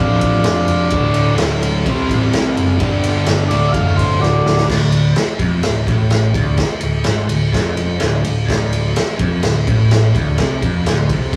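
Rowdy and raw, this 127 BPM garage rock excerpt opens with a buzzy vintage combo organ melody bathed in spring reverb alongside a crunchy, double-tracked overdriven guitar riff, a growly picked electric bass and an up-front, gritty acoustic drum kit with a punchy kick, before a drum fill at 4.2 seconds hands the second section to guitar, bass and drums alone in a rough, saturated rehearsal-room sound.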